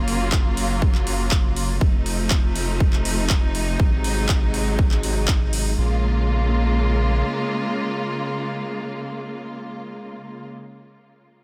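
Driven by a punchy, up-front electronic kick at a straight 121 BPM in 4/4, this dreamy, bittersweet progressive house excerpt in Bb minor pairs it with overdriven handclaps and metallic hi-hats from a deep house kit, both dropping out by about 5.6 seconds. A round, dark analog bass with a sawtooth and sine character pumps under sidechain beneath clear, focused bowed strings holding sustained chords with vibrato, moving through Gbmaj7, F7 and Ab7 before settling on Bbm7 at 5.8 seconds. Once the bass drops out around 7.2 seconds, the strings carry on alone to the end, framed by a small room reverb.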